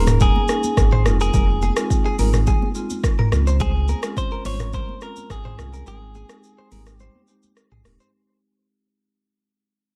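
Joyful and breezy, this afrobeats excerpt in Ab major moves at 106 BPM over Eb7sus4, Fm7, Dbmaj7 and Abmaj7 chords, with a bright, clean, direct-recorded electric guitar carrying the melody through digital delay, a second twangy electric guitar riff shimmering with lush chorus and delay, warm marimba accompaniment, a deep, sine-toned sub bass with octave up front, an overdriven electronic afro-pop kit with a deep kick, metallic hats, rim click, shaker and toms, and soft, high-tuned congas tucked in the background, all fading out from the start and easing into a break at 5.9 seconds.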